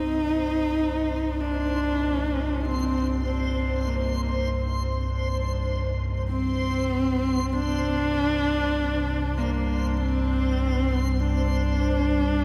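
A cavernous cathedral reverb with a long 6.5-second tail surrounds this dark, unsettling ambient drone, cut from a longer piece and moving at a slow 49 BPM in 4/4 in C minor over a single Csus2 chord. Up front, a deep, ominous rumbling drone sits low in the register, its wave-folded tone building on a slow attack and sustaining with a long release. Close above it, a single husky horsehead fiddle carries the melody with bowed horsehair strings, shaping its expressive line with vibrato and portamento inside a diffuse ambient delay. High over both, a reversed, granular texture swells in a dreamy, bright haze on a soft attack. Very quiet carillon bells ring bronze arpeggios with an iron-clapper edge, entering at 0.2 seconds and dropping out by 10.0 seconds while the drone, fiddle and texture carry on to the end.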